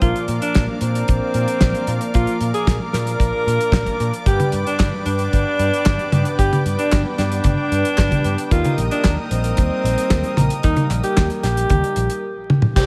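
A light reverb and small-room ambience frame this nostalgic, danceable italo disco passage, with vinyl crackle running underneath, cut from a longer piece and moving at 113 BPM in a straight 4/4. A clear alto saxophone carries the melody up front, pop-style with vibrato and a tape echo, over chords that move from Bb to G to Eb. Behind it, a lush unison pad of detuned sawtooth and square waves holds sustained, chorused chords with a soft attack, while a glossy chorused polysynth adds retro stabs built on pulse-width modulation and filter sweeps, sitting in the background. A vintage foam-muted picked electric bass gives a round, dark, amped low end. The damped 70s drum kit, dry and polished with a fat snare, dark cymbals, handclaps, hi-hat and toms, sits up front with gated reverb beside a tight, airy kick, and a drum fill arrives at 12.5 seconds before an electronic downlifter in the background closes the passage at 12.8 seconds.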